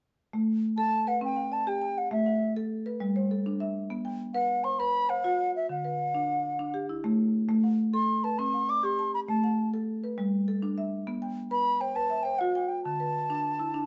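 A baroque flute carries the melody from 0.8 seconds, its pure wooden tone close and expressive, with vibrato and a crisp attack. Beneath it, a marimba struck with medium hard mallets rolls out woody, percussive arpeggios from 0.3 seconds, its rosewood bars sounding boxy and up front. This rippling, warm southern African traditional excerpt moves at 134 BPM in a straight 12/8 around an equiheptatonic A, with both parts playing live in one room under moderate studio reverb.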